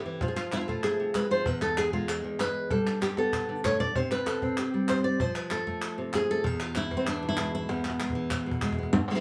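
Recorded live in one room with a short, wet studio ambience, this brief cut from a longer flamenco piece moves at 193 BPM in E phrygian dominant, dramatic and mournful in mood. A bright, up-front flamenco guitar, fingerpicked on fresh strings with audible finger squeak, carries the melody over F, E, G and C5 chords, while a woody cajon played with hard hands sits close and dry with faint snares, and drum fills arrive at 3.0 and 7.7 seconds. Crisp palmas hand claps, heard in a small room, join at 0.4 seconds.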